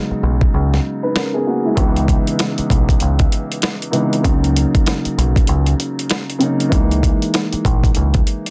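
Dense and heavily limited, with light reverb, this short excerpt from a longer boom-bap hip-hop piece has a moody, dark air at 97 BPM in 4/4, with a swung sixteenth-note feel. A dark upright piano opens at 0.0 seconds with a mellow, woody, boxy tone and long sustain, filtered at both ends of its range as it carries the accompaniment. A deep dub picked electric bass joins at 0.1 seconds, round and punchy, sounding direct and amped down in the low register. By 0.4 seconds a dusty soul sampler-style drum kit arrives, gritty and compressed, with a thumpy kick, a medium-tuned snare and hi-hat sitting up front. The harmony moves from Bmaj13 through C#m9 and a rootless Bmaj7 to A#m7b5, giving the loop a brooding, jazzy shade.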